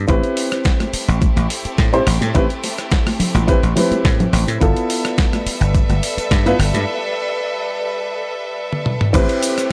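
Nu-disco with a groovy, cosmic mood, this short excerpt is cut from a longer piece and moves in a straight four-four over Am7 and G13 chords. An overdriven, knocking electronic kick sits up front alongside a punchy, foam-muted thumbed slap bass carrying tube saturation and sidechain pumping. A dusty sampler-style kit adds a compressed, gritty medium-tuned snare, rim click, hi-hat, cabasa, toms and crash in small room ambience, while tube shaker and congas played with soft hands stay in the background with a vintage, band-limited tone. A dark, boxy baby grand piano with audible action noise and short sustain plays close-up accompaniment through analog delay, and a clear studio violin section holds focused, bowed chords with vibrato that pump along with the sidechain. A break arrives at 6.9 seconds, topped by a drum fill at 8.7 seconds, and the whole mix has little reverb, a dry hardware grit with transformer saturation, and lossy compression artefacts.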